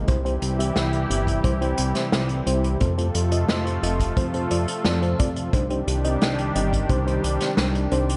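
A detuned, up-front analog pad with chorus and sidechain pumping holds sustained chords beside dark, round FM electric piano stabs trailed by tape echo and a glossy, chorused synth bass, while distant, roomy acoustic drums played with bundle sticks (a tight kick until 7.0 s, plus hi-hat and a medium-tuned snare) join at 0.1 s in this nostalgic, cinematic synthwave excerpt at 88 BPM in straight 4/4, moving from C to F to Cmadd9 under light studio reverb.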